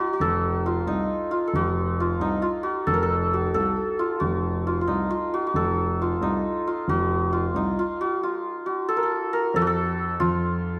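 A shimmering, ringing santur carries the melody up front in this passionate, stately Persian modal ensemble piece in F dastgah homayun, moving at 90 BPM in a straight 6/8 with the beat on dotted quarters and tuned to A4 = 439 Hz. A dark, mellow grand piano enters at 0.2 seconds to play the bass line low beneath the hammered santur, both set close in a moderate recital hall reverb. This short cut from a longer piece shifts into a new section at 9.5 seconds before ending at 10.8 seconds.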